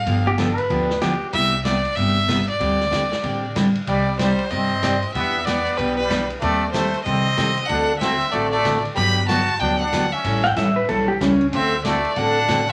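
Swung eighths at 188 BPM drive this playful, down-home western swing snippet in G major, where a clear, focused fiddle carries the melody over a bright jumbo acoustic guitar, woody, growly upright bass and a gritty vintage drum kit with dark cymbals, while an up-front pedal steel slides in briefly at 0.3 and 10.4 seconds and a plunger-muted trumpet adds wah-wah, scooped-note lines from 3.9 seconds, set in wet studio reverb with a layer of vinyl crackle.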